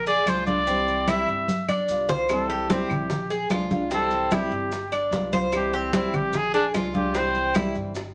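Cuban son and guajira in a danceable mood, this brief cut from a longer piece puts a clear, smooth-topped trumpet solo with vibrato up front beside a bright, metallic picked tres, over fingerpicked nylon-string guitar with a full-bodied classical depth, a growly, thumpy pizzicato upright bass, thick-skinned damped congas, woody claves and grainy maracas in the background, with a drum fill at 1.5 seconds before tight, high-tuned bongos join at 2.3 seconds, all cycling through Bb7, C and G7 chords in a wet studio reverb.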